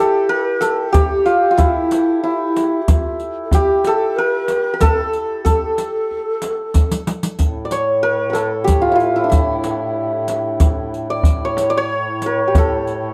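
A bright, ringing santur carries the melody from the opening, its hammered notes shimmering up front in a plate reverb, while a breathy, mellow low ney plays a second line alongside it with soft attacks and vibrato. This is a passionate, festive Persian modal ensemble piece in dastgah homayun on A, moving at 93 BPM in a straight 3/4. Tombak and riq join almost at once: the tombak is deep and up front, and the riq's dark jingles sit close and dry, both played with soft hands. During a drum fill near 7 seconds, the ney falls away, and at 7.4 seconds a warm duduk enters to hold a drone on A2, its scooped, folk-style notes colored by vibrato. The production is dark with light reverb, and the passage is cut from a longer piece.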